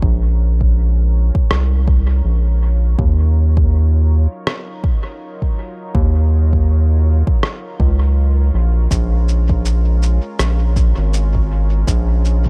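An electronic kick drum sits up front on a swung 81 BPM 4/4 pulse, joined at 1.5 s by a muffled, pitched-down rim click and cabasa with a compressed, sampler-style grit and dub echo. A round, mellow analog bass carries the low end in Bb minor, while a detuned sawtooth pad with chorus fades in gradually beneath, soft and smooth, moving through Bbm7, Ebm9 and back to Bbm7. This spacious, deep ambient dub passage is cut from a longer piece and has a dry, close mix.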